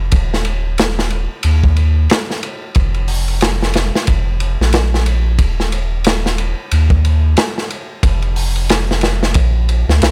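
A dry sound frames this short cut from a longer trip hop piece, dark and smoky in mood and moving at 91 BPM in 4/4 with a lazy swing on the sixteenths. A soft dub sub bass anchors the low end from the first moment, deep and round, its fast attack giving way to sustained notes that sit between Eb1 and Eb2. A crunchy breakbeat drum kit joins at 0.1 seconds with hi-hat, kick drum, ride cymbal and snare drum, sounding like acoustic drums in a studio room placed up front in the mix. The kit is saturated, gritty and warm, with a tight kick, a medium-tuned snare and dark cymbals under a rolled-off top that keeps it mid-forward. Together the two parts hold a single section for the full 10.1 seconds.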